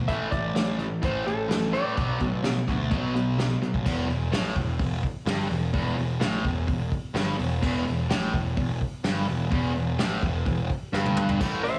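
A bright, double-tracked overdriven electric guitar riff with slapback echo drives this swaggering, gritty classic rock excerpt at 127 BPM in E minor, backed by a fuzzy picked electric bass and a soft brush drum kit with a fat snare and dark cymbals, while a clean slide lap steel with echo and delay sings a melody from 0.1 to 3.3 seconds before returning after a drum fill at 10.9 seconds, all set in a lush hall reverb for a big arena sound.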